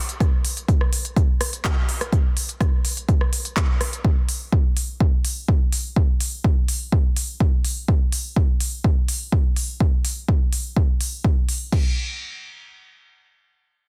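A techno drum kit opens the excerpt at 0.1 seconds, with the electronic kick drum joining just after at 0.2 seconds, setting up a dark, dramatic groove in a straight 4/4. The kick is analog and punchy, sitting up front with a small-room character. Around it, the kit layers crash cymbal, handclaps, smooth hi-hats and rim clicks into a produced, tape-tinged texture, its snare edged with soft clipping. Both parts carry that close, dry room sound with little reverb, and the whole is mastered dense and heavily limited in a modern style. The drums run together until 11.8 seconds, just after the music moves into a new section at 11.7 seconds, cut from a longer piece.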